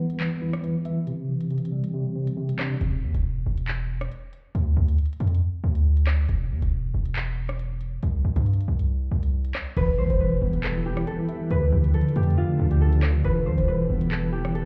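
Dark and tense, this drill cut moves with a half-time feel and sounds as if heard muffled through a wall, with a club's reverb hanging around it. A mellow, clean tine electric piano opens up front through a low-pass filter, its tone warm as if through built-in speakers. The drill drum kit enters almost at once with crisp hats, rim clicks, handclaps and crash, while a punchy, heavy 808-style bass with a fast attack and decaying sine body arrives at 2.8 seconds, as the piano drops away. At 9.8 seconds the piano returns alongside a fingerpicked concert harp melody, mellow and ringing, and an electronic impact in the background. An ethereal, airy pad of detuned sawtooth and triangle tones then swells in behind them at 10.3 seconds, bathed in ensemble chorus and its own reverb, over chords moving between Em and Dm.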